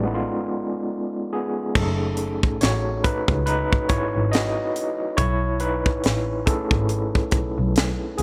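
Swung sixteenths at 70 BPM in 4/4 carry this smooth, introspective R&B and neo-soul excerpt in F# dorian, where a barky, gritty overdriven tine electric piano with fast tremolo through a combo amp and a clear, bowed double bass with vibrato open on a C#7 break before a tight acoustic funk kit with a high-tuned snare enters at 1.8 seconds beneath the electric piano's solo over F#m69 and B13sus4, set in a small room with light reverb.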